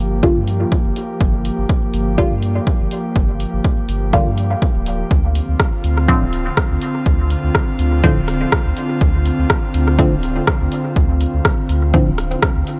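A dry, close mix frames this deep, meditative dub techno excerpt, set at 123 BPM in 4/4 with a 55% swing on the 16ths, in G minor and tuned to A4 = 437 Hz. A round sine sub bass and an airy, breathy pad sound from the start, both pumping under sidechain compression, the pad's detuned triangle and sawtooth layers with a noise layer, slow attack, long release and chorus sustaining chords that move from Gm7 to Dm7 at 5.1 s. At 0.2 s a muted, sawtooth dub chord stab enters with a filtered pluck and short decay, colored by chorus, phaser and dub echo. A punchy, tape-warm analog kick drum sits up front in a small room reverb from the same moment. From 0.5 s a layered deep house kit adds dark hi-hats and rim clicks, also up front, with small room reverb and dub echo.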